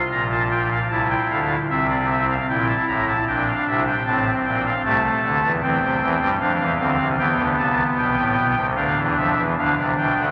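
The recording is bathed in a cathedral's reverb, with a long tail of 6.7 seconds trailing behind every note, while the organ sits up front in the sound. This is a serious, contemplative baroque-style fugue in three parts for pipe organ, set in F major at a steady 76 BPM in 4/4 with a straight feel. The single instrument is a soft reed voice, an oboe solo stop given a romantic voicing and a tremulant. It plays alone across the full 10.3 seconds and spans a range from A1 to Bb5. The harmony opens on F, passes through rootless chords and settles on C before moving through E minor to a G7 over D, where this fragment of a longer piece breaks off.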